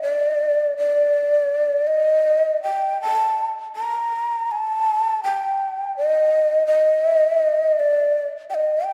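A breathy, hollow shakuhachi plays alone and up front from 0.0 to 8.9 seconds in this calm, austere fragment of Japanese traditional chamber music, moving in free rubato around 81 BPM in 4/4 within D miyako bushi between D5 and Bb5, its close-miked bamboo tone marked by vibrato, tongued attacks and an audible chiff, all set in a wet church reverb that lingers for 2.6 seconds.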